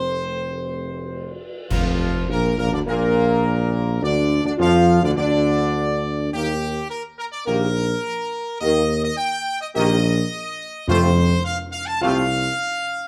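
Triumphant and regal, this classical ceremonial fanfare, cut from a longer piece, sets a bright, present trumpet section up front on the melody over sustained chords from a mellow French horn section with light vibrato and a dark trombone section, both distant and roomy in the background, while a smooth-topped tuba anchors the bass. At 1.7 seconds the band lands an accent as dark clash cymbals and concert bass drum strike close and dry, and near 10.9 seconds soft-mallet timpani add a round thud as the harmony returns to F. The brass sections play tightly in a moderate large-studio reverb.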